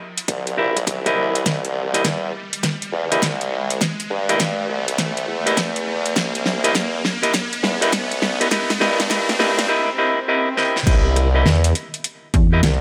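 A wobbling, sawtooth-edged formant-sweep wobble bass with chorus and overdrive leads this swaggering, funky glitch hop excerpt at 102 BPM with swung 16ths over a C7#9 chord. It is joined by clean, hollow-body semi-hollow electric guitar stabs with sidechain pumping and delay, a pop drum kit with a fat snare and metallic hats that plays fills through the build-up, a punchy electronic kick drum in the background, and a faint electronic riser and swell that carries the build-up to the drop at 10.9 s. A snappy, metallic slap-like FM bass enters later at 12.3 s, and the whole mix sits in a lush hall reverb.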